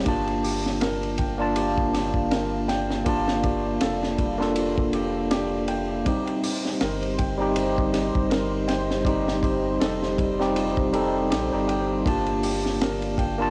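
Smoky and brooding, this trip hop excerpt in G minor sits at a swung 80 BPM, moving from Gm7 to Cm/G and back, with a gritty, overdriven tine electric piano up front through a combo amp, colored by harmonic tremolo, tape echo and cassette grit. Beneath it, a felt-muted upright piano plays soft arpeggios with audible action noise, a round dub sub bass holds the low end, and from 1.0 s a detuned, wave-folded analog pad sustains moody chords with chorus in the background. A crunchy, saturated breakbeat kit with a punchy kick, high-tuned snare and dark cymbals drives the groove in a small, lightly reverberant room with a home-cassette character.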